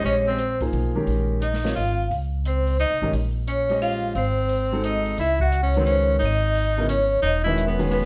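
A swung 3/4 pulse at 176 BPM drives this searching, spiritual modal jazz excerpt in Bb dorian, where a ringing, metallic vibraphone with fast motor vibrato carries the melody over a bright tenor saxophone second line, a smooth, vintage grand piano accompanies through Bbm11 and Ab7b9 before the shift to C#m11 at 5.2 seconds, a woody pizzicato upright bass sits up front, and a dark jazz kit with a boomy kick, hi-hat and snare rests low in the mix, within a moderate club reverb.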